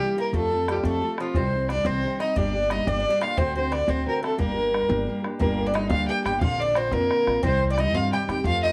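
Dark, lively and driving, this Celtic jig excerpt in G minor at 118 BPM puts an earthy, smooth-topped bowed fiddle with light vibrato up front on the melody, over a metallic double-strung Irish bouzouki second line and a full-bodied fingerpicked steel-string guitar, with a thumpy, woody pizzicato upright bass and an open, boomy bodhran joining at 0.3 seconds and a very quiet, pure wooden baroque flute adding a crisp-edged second line from 1.3 seconds, all set in moderate studio reverb.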